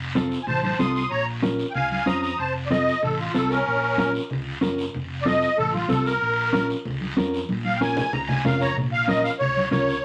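This is a cumbia excerpt, cut from a longer piece, with a driving, passionate mood at a brisk 188 BPM in straight 4/4, set in B-flat harmonic minor and moving between F, F7 and B-flat minor. A reedy musette accordion carries the melody up front from 0.4 seconds, its shimmering wet tuning giving the solo line a trembling edge across a range from Db4 to Eb6. Beneath it, a mellow electric guitar plays clean, fingered accompaniment, dark and compressed and also close in the mix. A round, fingered electric bass anchors the low end, while thick-skinned congas played with soft hands and a raspy guiro fill out the percussion with a small-room acoustic feel. A fill arrives at 7.5 seconds before the music shifts into a new section at 8.8 seconds, all set in a short, wet studio ambience with vinyl crackle.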